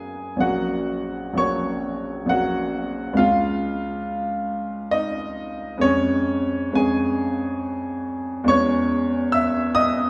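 In a slow, rubato 3/4 at 67 BPM with uneven beats, this nostalgic, tender romantic nocturne for solo grand piano offers a smooth, vintage-toned, up-front instrument spanning A#1 to E6, drifting through F#/A#, C#, C#/E# and C#m/E across 10.1 seconds cut from a longer piece, all set in a wet recital hall reverb with a 1.7-second decay and heard from further back in the room.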